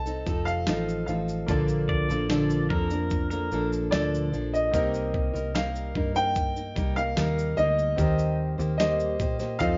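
A dusty, sampler-style drum kit sets a straight 4/4 pulse at 74 BPM from 0.1 s, its thumpy kick, medium-tuned snare and shaker sounding compressed and gritty beneath this carefree, heartfelt acoustic pop excerpt. A dark, foam-muted electric bass, round and punchy, holds down the low end, while an up-front fingerpicked steel-string acoustic guitar with a jumbo, full-bodied tone fills in the harmony. The melody sits on a woody, open upright piano in its upper register, with a clear, polished concert grand tucked into the background, adding short-sustained accompaniment. Between 1.9 and 3.7 s a clean pedal steel guitar slips in a brief second line, played with fingerpicks and slide and shaped by volume swells. The chords move from F7 to Bbmaj7, Cm7 and Eb6, and a wet studio reverb sets the band further back in the room with a soft, rolled-off top end.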